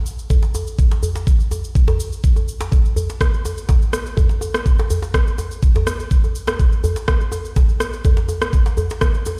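Heard as if through a big sound system in a bare stone room, this short house fragment at 124 BPM in a straight 4/4 carries a warm, spiritual mood. An up-front, knocking electronic kick drives from 0.3 seconds, with electronic cabasa and rim click re-recorded in a large room sitting lower in the mix. A tight, cracking djembe, close and dry, adds an acoustic edge alongside them until the cut at 9.4 seconds.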